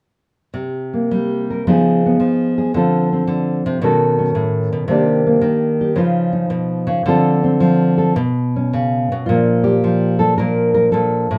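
Solo jazz in Bb major at 110 BPM, this short excerpt from a longer piece has a playful, swinging feel, its eighth notes swung yet loosened by rubato. A lone nylon-string guitar, up front and thumb-plucked with the fresh-stringed, classical tone of an acoustic instrument, plays from 0.5 to 11.4 seconds, moving through chords such as Db9, Dm7 and Cm9 before settling on Bbmaj7 at 9.3 seconds as a new section begins. A moderate club reverb places the guitar in a club-like room.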